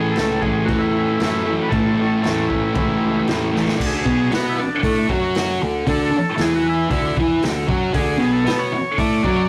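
A thick, double-tracked fuzz guitar riff sits up front beside a buzzy combo organ melody with light vibrato from the first moment, joined at 0.2 seconds by overdriven fingered bass and a vintage drum kit with dark cymbals and a punchy kick, in a rowdy, raw garage rock excerpt at 116 BPM where a drum fill at 3.5 seconds carries the music from an A chord into a D5 passage, heard through a rough rehearsal-room recording with stone room reverb and saturation.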